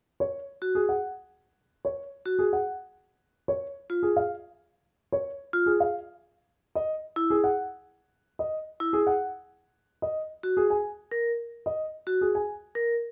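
Classical minimalist pattern music in 3/4 at 110 BPM, this short passage cut from a longer piece has a hypnotic, bright mood with a straight feel. A dark grand piano carries the melody from 0.2 seconds, its tone mellow and boxy, placed up front between G#4 and G#5. A vibraphone struck with hard mallets, its motor off, enters at 0.6 seconds with arpeggios in the range E4 to A#4, sounding metallic and ringing, mid-forward and also up front. The harmony goes unstated until a rootless D#m arrives at 9.8 seconds, and the piano drops out at 12.5 seconds just before the vibraphone's last notes. Close, detailed microphones and light reverb give the pair an intimate, clear presence.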